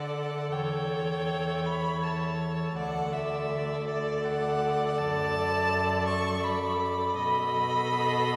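Tender and serene, this brief passage cut from a longer piece is a slow romantic movement for string quartet in D major, moving at 82 BPM in 3/4 with a rubato feel. The first violin carries the melody up front, its smooth, even tone shaded with vibrato, while the second violin sings a more distant second line with expressive portamento. The viola sits close with a soft attack, playing its accompaniment with gliding, vibrato-rich phrasing, and the cello anchors the bass with a focused, bowed sound. All four players are heard together throughout, and the harmony moves from D through A7/E, D/F# and ending on B7 at 7.2 seconds. A lush church reverb with a long 3.4-second decay surrounds the quartet, lending the rich string tone a spacious glow.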